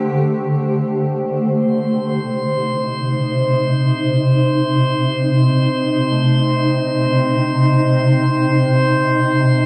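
Ambient in free time and C dorian, this serene, spacious excerpt opens on a cloudy, blurred granular pad that sustains chords up front, moving from D7(no3) to C minor at 1.6 seconds. A glassy sine texture of drifting overtones, bright and chorused, joins at 1.8 seconds. A very quiet, mellow FM bell adds warbling arpeggios from 5.5 seconds, all set in a vast, echoing cathedral reverb.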